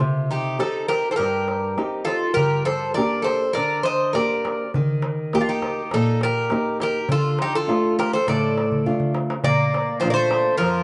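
Greek folk in a bittersweet, cool mood, cut from a longer piece, where a bright, metallic bouzouki carries the melody up front over a second, warm bouzouki line, a small fingerpicked nylon-string guitar accompaniment that opens alone at 0.0 s, and a vintage clay-shell darbuka that plays a fill from 8.7 s, set in a dark production with moderate plate reverb.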